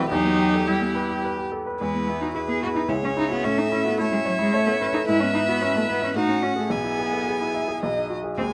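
Graceful and cheerful, this quick classical-period movement for piano quartet moves in 3/4 at 109 BPM in E major, tuned to A4 = 436 Hz, and is cut from a longer piece. A bright, intense violin carries the melody up front with vibrato and an airy bow, while a clear, natural baby grand piano with short sustain, also up front, and a smooth, even viola with light vibrato supply the accompaniment. A rich cello with vibrato and a smooth top sings a second line from 0.1 to 8.4 seconds, all captured by close, detailed microphones in light reverb, with the harmony turning from E minor to E major before closing on B.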